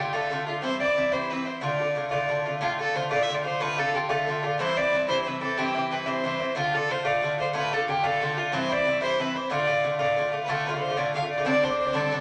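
A wet studio reverb surrounds this spirited, driving Celtic folk excerpt in D dorian at 122 BPM in 6/8, where a rich, biting fiddle with an airy, earthy bow sits close and up front on the melody, while a picked Irish bouzouki, its double strings ringing metallic, supplies accompaniment over shifting Dm and C chords before settling on Csus2 at 11.5 seconds.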